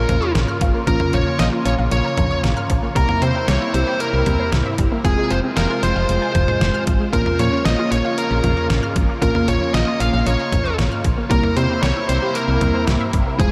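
Melancholic and nocturnal, this 115 BPM synth-pop excerpt in Bb dorian sets a smooth, overdriven lead guitar up front with diffuse ambient delay over a punchy, round FM bass, soft felt-like synth keys, a thick, airy pad treated with chorus and phaser, background unison pluck arpeggios, and a detuned 8-bit drum machine with a thumpy kick that enters at 0.1 s, all washed in a huge, dreamy reverb as the chords move from Bbm through C7 and Fm.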